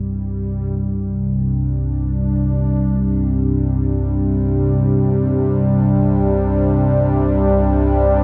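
In free time, this short cut from a longer dark ambient drone piece feels unsettling and cavernous, bathed in a huge reverb with a long tail and a dulled top end. A warbling, wave-folded analog drone sits low and mellow under a detuned, resonant sweeping pad holding sustained chords, both up front with chorus, while a filter sweep moves across the drone throughout. For only the first 2.3 seconds, a barely audible gamelan-type bronze metallophone rings out metallic arpeggios over the chord.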